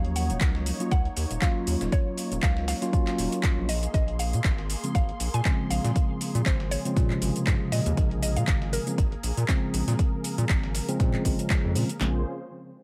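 A punchy, overdriven deep house kit with a deep kick, snare and handclaps sits up front in this hypnotic deep house excerpt at 119 BPM in Bb minor, layered with a second overdriven kit of metallic hi-hats, claps and shaker and a gritty, compressed sampler-style kit of hi-hat and snare in the background, while a round, dark analog bass and a smooth, detuned chorused pad pump to the sidechain, mellow tine electric piano stabs carry digital delay, and a woody FM mallet-like pluck melody with 12-bit sampler grit, chorus and delay runs until 11.5 s over chords shifting from Ebm9 to Bbm9 at 3.7 s in a dry mix.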